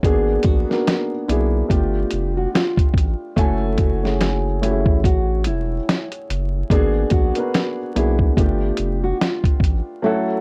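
A swung 72 BPM groove opens this melancholic, reflective lo-fi hip hop excerpt, with a sampler-style kit of thumpy kick, medium-tuned snare and hi-hat sitting muffled and compressed up front beside a deep, saturated sub bass. A dark upright piano, woody and intimate with audible action noise and a cassette-tape tint, carries the chords from G#m7b5 through G9 and F#m7, while a thumb-plucked nylon-string guitar traces a softly filtered melody. The dry, gritty recording is dusted with vinyl crackle, and the drums stop at 9.9 seconds, just after the bass drops out at 9.8 seconds.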